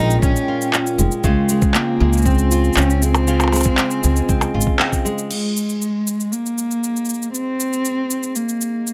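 A dark, bowed cello with vibrato carries the melody from the first moment, close and up front with a digital delay, over a warbling, detuned, nostalgic pad with chorus in the background, fingerpicked nylon-string guitar arpeggios with audible finger squeak, and thumpy pizzicato upright bass, all moving from Bbm7 to Dbmaj7 in this hopeful, pastoral folktronica excerpt at 118 BPM. Overdriven electronic click drums with handclaps, shaker, percussion blips and a crash sit up front, joined by a muffled, pitched-down sampler kick, and the band lands an accent at 4.8 seconds. The piece shifts to an Ebsus4 chord at 5.3 seconds, and the guitar stops at 5.9 seconds, leaving cello, pad and click drums in a moderate studio reverb.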